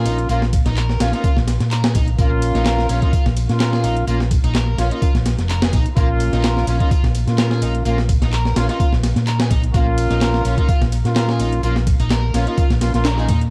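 A funky, gritty breakbeat groove at 127 BPM in 4/4, swung lightly on the sixteenths, sits on a single Bb minor chord throughout this short cut from a longer piece. A compressed, sampler-style breakbeat kit drives it with a thumpy kick, a medium-tuned snare and hi-hat, tape-tinged and grainy, while a quieter, layered electronic garage kit adds handclaps, warm hats and ride cymbal, re-recorded in a small room. Up front, a round, dark hollow-body short-scale bass, fingered and amped, anchors the low end between F1 and Bb2. A biting, double-tracked overdriven guitar picks a riff with tube saturation, vintage 12-bit sampler crunch and dub echo, and a brass ensemble in classical style punches stabs that also trail dub echo. The band hits an accent together at 13.1 seconds, and the whole mix carries a dark, warm production with light reverb and digital ambience.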